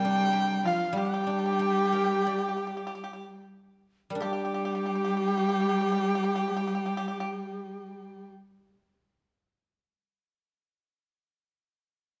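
Chinese traditional chamber music in G yu mode, graceful and tender, drifts in rubato between 71 and 101 BPM and slows through its first 4.2 seconds, as a dark, nasal erhu carries the melody with light vibrato and portamento over a breathy low bamboo xiao, a dry, percussive pipa and a rich, smooth cello, while a silvery guzheng accompanies and rings on alone until 10.2 seconds, all set in a moderate recital hall reverb.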